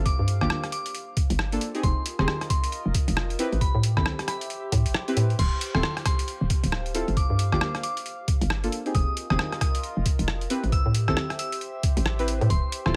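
A digital ambience frames this late-night, skippy two-step UK garage cut at 135 BPM, swung on the 16ths, with a gritty, tape-warm, pitched-down, compressed sampler-style kit of congas, hi-hat, rim click and crash sitting up front beside a thumpy electronic kick. A hollow, bouncy FM bass knocks through the low end while dark, full-bodied chord stabs with filter sweeps and dub echo move through Gm7, Fm9, Am9 and Dm9. Above them, a pure, vintage synth bell melody drifts through phaser and echo, and a nostalgic lo-fi pad warbles softly underneath, pumping against the beat across the full 13 seconds.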